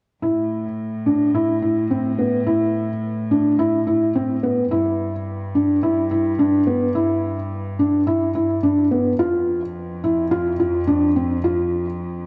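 A felt-muted upright piano and a cello section enter together at 0.2 seconds in this short cut from a longer piece of piano and strings electronica in A minor, moving at 107 BPM in a straight 4/4 with a moving, hypnotic mood. The piano sits up front with a soft, dark, intimate thick-felt tone, playing a riff through a low-pass filter and digital delay until 11.8 seconds, while the bowed cellos carry the bass beneath with a reedy, nasal gut-string colour in period style. A moderate echo chamber reverb surrounds the pair as the harmony steps down from A5 to G5 at 4.7 seconds and F5 at 9.2 seconds.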